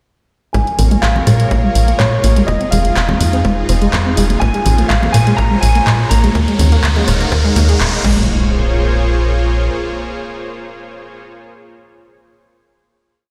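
A tight, nasal sequencer bass drives this emotional progressive house build in Bb minor at 124 BPM with pumping eighth notes, set over a four-on-the-floor electronic kick, an overdriven house kit of hi-hat, rim click, handclaps and crash, and background congas, while a detuned analog pluck arpeggio with chorus and delay and a brilliant grand piano melody with delay, doubled in unison by a pure FM synth bell, move through filter sweeps above a lush supersaw pad, as a riser entering at 3.5 s leads to a final impact at 8.3 s in a stone room reverb.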